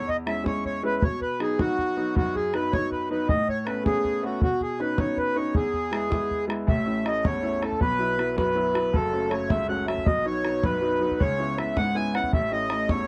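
Lively and bright, this short Celtic jig excerpt in 6/8 at 106 BPM sets a reedy, slowly beating accordion melody up front over a brilliant, deep-bassed concert grand piano accompaniment with short sustain and a damped, tight bodhran in a small room, all under light reverb in a dark production, as the chords move from E6 through Aadd9 and Badd9 before a second section begins at 6.7 seconds, bringing Bsus4, F#m and C#m7.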